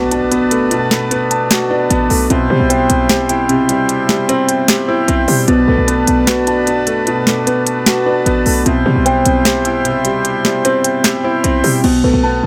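Menacing and melancholic, this half-time trap hip hop excerpt at 151 BPM in B phrygian sets a felt-muted upright piano, up front with audible action noise, against a reedy, nasal harmonium holding sustained chords until 11.8 seconds, dark chorused synth keys with digital delay spinning arpeggios, a punchy, tight 808-style bass, and a crisp, sharp-snared trap kit with finger snaps and crash, all in light reverb, as a very quiet electronic impact sounds at the start of the excerpt, with the hi-hats dropping out at 11.8 seconds as the chords land on B7(no3).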